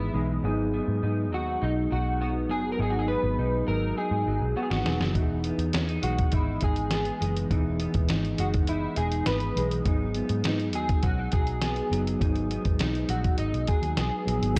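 Mellow and hazy, this bedroom-pop excerpt in G# minor moves at 102 BPM, drifting from Emaj7 to G#m7 at 9.9 seconds under a dark, lightly reverberant production. Two slightly broken-up guitars through a small old amp carry the tune and the accompaniment, the lead with analog chorus and tape echo and the other with chorus and a warbly pitch drift, over a mellow tine electric piano with cassette-tape colour and a round, foam-muted picked bass sitting up front. A compressed, pitched-down sampler kit with a thumpy kick and 12-bit grit enters at 4.7 seconds, inside a drum fill spanning 4.0 to 5.2 seconds, and a hollow, flute-like pad is barely audible at 14.6 seconds.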